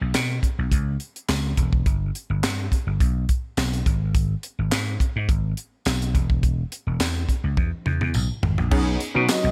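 Danceable and smooth, this short excerpt of early-eighties boogie funk rides on a growly, punchy slap bass and a tight, dry funk kit with bright cymbals, handclaps and gated reverb, a jingly tambourine sitting in the background, before a drum fill at 7.6 seconds ushers in a detuned, chorused polysynth comp at 8.7 seconds and a gliding portamento lead with vibrato touches in at 9.3 seconds.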